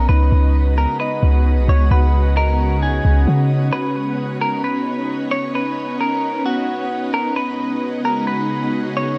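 A half-time hip hop groove in 4/4 at 132 BPM sets a dreamy, floating mood in B major, in a short passage cut from a longer piece. A clean electric guitar carries the melody throughout, its picked, compressed tone softened by a low-pass filter and trailed by digital delay. Beneath it, an ethereal, airy pad holds sustained chords up front, its detuned, warbling, vintage character thickened by ensemble chorus and its own reverb. For the opening 3.7 seconds, a deep, boomy 808-style bass sits prominently in the mix while muted, felt-like synth keys play soft arpeggios in the background through chorus, filtering and delay, all over a C#9sus4 chord. From that point, the guitar and pad carry on alone until 9.2 seconds, shifting to Bmaj9 and then returning to C#9sus4 at 7.4 seconds. The whole passage is bathed in light reverb and digital ambience.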